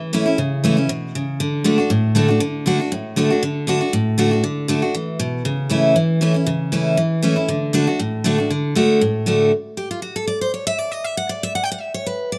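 A bright, full-bodied picked steel-string acoustic guitar carries this joyful, lively bluegrass excerpt entirely on its own, sitting up front in the mix. The feel is brisk in common time with a slight swing on the eighth notes, and the guitar covers a broad range from its low bass strings up to high treble notes. Harmony moves between A over C# and D through the opening stretch, giving a sunny, rooted grounding. At 9.5 seconds the chords drop away and the guitar breaks into an unaccompanied solo passage that runs until the cut at 12.4 seconds. The sound is a rough home demo with light reverb and a small-room ambience, lending the dreadnought tone an intimate, unpolished presence.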